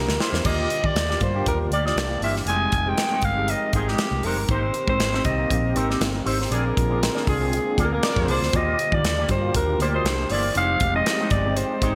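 A bright, polished 1980s-style digital production bathed in a lush hall reverb frames this nocturnal, bittersweet slice of jazz-funk pop at 119 BPM, cut from a longer piece and opening on a drum fill from a punchy, up-front studio kit with bright cymbals and gated reverb. A growling, raspy alto saxophone with delay carries the melody over tine electric piano with tremolo and chorus, a round, foam-muted fingered bass, a twangy envelope-filtered guitar riff with analog chorus, and a very quiet, shimmering pulse-width pad that enters at 0.4 seconds. Moving through Ebmaj9, C7, Fm9, Abmaj7 and Bb7, the band hits an accent from 6.5 to 8.5 seconds as a smooth background horn section adds a second line.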